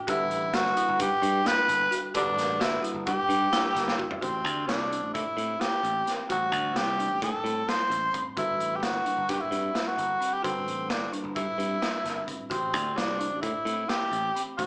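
Set at 260 BPM in an uneven 9/8, this intricate, tense progressive instrumental in A dorian puts a raspy, growling tenor saxophone up front over a gritty garage drum kit with a punchy kick, a bright, growly picked bass, woody marimba arpeggios and a bell-like electric piano in the background, while a ringing vibraphone with slapback echo sounds briefly at 3.5 seconds just before a drum fill leads into the second section at 4.2 seconds, all heard as a live gig through a club PA with lush hall reverb.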